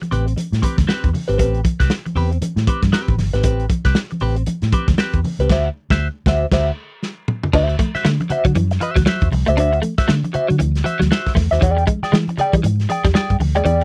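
A clean electric guitar through wah opens this hypnotic, sly funk excerpt alongside a crunchy breakbeat drum kit and congas, with a vintage muted fingered electric bass joining almost at once, all at 117 BPM in 4/4 with a swung sixteenth-note feel. The harmony rests on Am9 before shifting to D9, as the band hits accents from 5.5 seconds, capped by a short drum fill. The drums sound saturated and gritty, with a tight kick, a medium-tuned snare, dark cymbals and a rolled-off top, while the round, foam-muted bass sits up front beside the bright, compressed wah guitar. Tucked in the background, the congas have a thick-skinned, damped tone from soft hands. At 7.5 seconds a second clean guitar enters with a warm, picked riff treated with ensemble chorus, and the chords later turn to E7#9 near 11.6 seconds. The sound is dry and close, with the character of a 1970s studio recording.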